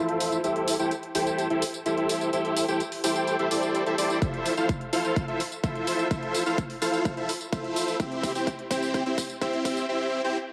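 Euphoric and anthemic, this festival progressive house excerpt, cut from a longer piece, is a build-up at 127 BPM in F major, moving through Am7, Fmaj7 and C. A huge, thick supersaw riff sits up front, detuned and sustained with a sub octave beneath it. Sidechain pumping, a low-pass filter, tape echo and a filter sweep shape the riff across the whole build. Overdriven electronic hi-hat and tambourine carry the pulse from the start, and a punchy, layered electronic kick enters at 4.2 s as a drum fill runs through to 9.9 s. A wet, lush hall reverb surrounds the mix, and the production is dark and warm.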